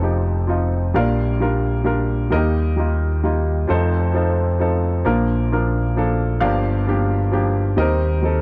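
A slow, straight 6/8 pulse moves at 44 BPM in dotted quarters, giving this tender, heartfelt folk-pop ballad in Bb major a gentle unhurriedness. A clear baby grand piano carries the melody across a broad span from F1 to F5 and sits up front with a natural tone and short sustain. Beneath it, a fingered electric bass holds the low end between F1 and F2, its sound dark, round and amped. Both parts play throughout the 8.4-second fragment of a longer piece, moving through F7, Bb6, Eb, F7, Bbmaj7, Gm7 and Eb6. The recording has a dry, close 1970s-style studio character, with studio reverb lending the intimate pair a little space.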